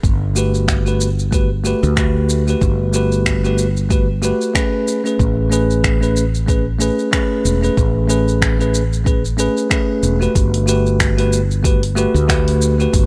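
Lightly reverberant and smooth, this sunset chillout excerpt sets a dark, round fretless electric bass with tube saturation up front beside a deep, layered electronic kick and a deep house kit of finger snaps, hi-hat and shaker with a small-room character, while a bell-like tine electric piano, clean and bright through a low-pass filter and tape echo, enters at 0.4 seconds over swung sixteenths and warm major-ninth chords.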